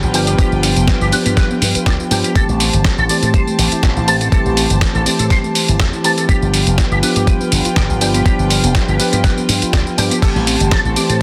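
A bell-like tine electric piano with digital delay opens this groovy, sleek nu-disco excerpt over G7 and Am7 chords, alongside dark, reedy bowed strings pumping under sidechain, a soft round arpeggiated pluck, punchy slap bass through an envelope filter, and a dusty, gritty sampler-style kit with a fat snare, tambourine and studio reverb, before a clean, chorused guitar riff with its own envelope filter and delay joins at 0.1 seconds and a thumpy, up-front electronic kick arrives at 0.4 seconds, the whole mix sitting in light reverb under a dense, heavily limited master.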